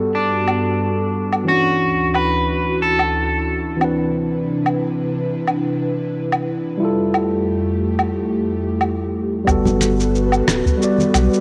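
Sunset chillout in G major at 90 BPM, this smooth, blissful excerpt moves with a gentle swing on the sixteenths through Gmaj9, Dmaj9, Cmaj9 and Fmaj9 chords. A clean tine electric piano and an airy, breathy pad with chorus hold the harmony throughout, the pad slow to bloom and long to fade, both softened by cassette tape. A bright, twangy electric guitar at the edge of break-up picks a short melody with tape echo in the opening seconds, stopping at 3.8 s. From 0.5 s a gritty, overdriven sampler-style soul kit carries hi-hat, rim click, shaker and woodblock up front. At 9.5 s a round sine sub bass and a deep, tape-warm electronic kick arrive, joined at 9.7 s by low-tuned congas played by soft hands in the background, all set in a lush hall reverb with a homespun cassette character.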